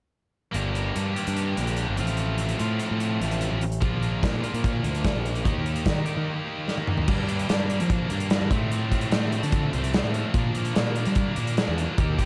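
A double-tracked, scooped high-gain guitar riff, a round fuzz-driven picked bass and a big acoustic drum kit all come in together at 0.5 seconds, setting a cool, moody indie rock groove in G minor at 147 BPM in a straight 4/4. Bright, distorted guitar sits up front beside the overdriven bass, while the kit's crash, hi-hat, medium-tuned snare, punchy kick and toms fill a big room, with a drum fill at 6.7 seconds leading into a second section at 7.1 seconds that shifts the opening Gm chord to Gm7. Light reverb and a dark, warm production frame this brief cut from a longer piece.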